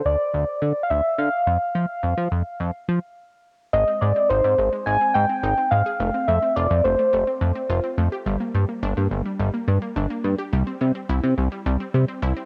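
A soft, round, keys-like FM synth lead carries the melody over a glossy, nasal chorused synth bass in this driving, melancholic synth-pop excerpt at 106 BPM, the lead coloured by chorus, cassette tape and analog delay and heard until 8.0 seconds, while a lush, punchy unison pluck enters at 3.7 seconds with detuned arpeggios over chords moving from Ab through F and Gm to C, all bathed in moderate spring reverb with the character of a home cassette recording.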